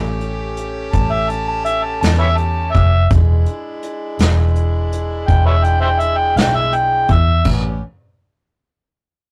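An overdriven, gritty harmonica takes the solo up front from 0.9 seconds, with scooped notes, tongue slaps and a light vibrato over a slow, soulful 12/8 blues in A mixolydian at 55 BPM, moving from A7 to E7 and landing on A9 at 7.5 seconds. Underneath, a round, foam-muted electric bass sits up front, a vintage brush kit with dark cymbals and a tight kick keeps a rollicking feel, and a bright horn section holds sustained jazz chords. The short cut has the rough, tube-saturated sound of a rehearsal room with light reverb.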